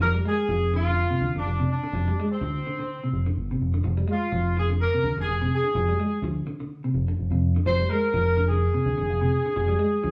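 A tight, clear horn section carries the melody from the first moment, joined by picked arpeggios on a clean electric guitar and a round, punchy fingered bass sitting up front, all holding on a single Fm6 chord throughout this 10.1-second cut from a longer afrobeat piece. At 126 BPM in F dorian with a gentle sixteenth-note swing, the groove feels hypnotic and intense, the horns adding a light vibrato and a vintage pop-style sheen. The band plays live together in a small stone room whose wet reverb gives the sound a close, lively ambience.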